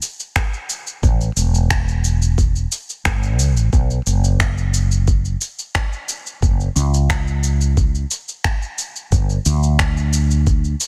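Hypnotic and meditative, this short cut from a longer organic downtempo piece moves at 89 BPM in a straight 4/4. Electronic cabasa and finger snaps open at 0.0 s with a tape-warm, small-room character and soft clipping on the snare. A gritty, thumpy, sampler-style kick sits up front from 0.4 s, and a dark, round, punchy fretless electric bass enters at 1.0 s, ranging from E1 to D2 with sidechain pumping. The sound is dry, dense and heavily limited in a modern master.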